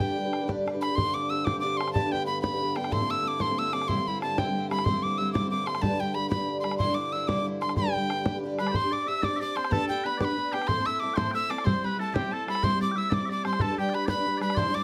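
A lively, cheerful Celtic jig in 6/8 at 124 BPM, cut from a longer piece, opens with a breathy, bright tin whistle carrying a tongued, chiffy melody with vibrato up front over a shimmering, octave-doubled picked twelve-string guitar, a tight, damped bodhran and a dark, reedy accordion drone, until sweet small bagpipes enter with a second line at 8.6 seconds and the accordion drops out at 8.8 seconds, the whole heard in a wet studio reverb.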